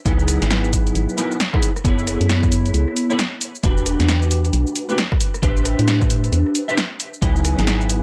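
A bouncy two-step garage groove at 134 BPM swings its 16ths, driven by a punchy analog electronic kick that drops out at 7.3 seconds and a drum machine of punchy snare, rim click, hi-hat and cabasa, both re-recorded in a small room. Underneath, a hollow, organ-like FM bass with a fast, decaying attack carries a dark, moody line through a minor eleventh progression from C#m11 to F#m11, Em11 and Am11. Up front, a twangy, slightly broken-up electric guitar plays compressed, picked stabs through ensemble chorus and analog delay, all captured dry with gritty cassette-tape character in this short cut from a longer piece.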